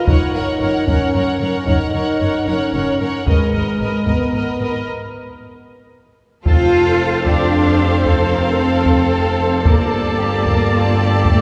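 Heard through a wet church reverb, this majestic, heroic stretch of epic orchestral film score in 12/8 is cut from a longer piece. A clear, distant violin section carries the melody above a soft-attacked second violin line, focused violas, close-miked French horns holding chords, and a rich cello section and woody double basses in the background, driven by heavy-stick taiko, with round, very quiet timpani entering at 3.3 s. After a break from 4.9 s and a drum fill at 5.7 s, the music turns at 6.5 s as a bright, brassy pipe organ trumpet stop with chiff and a mellow tuba join the chords and bass.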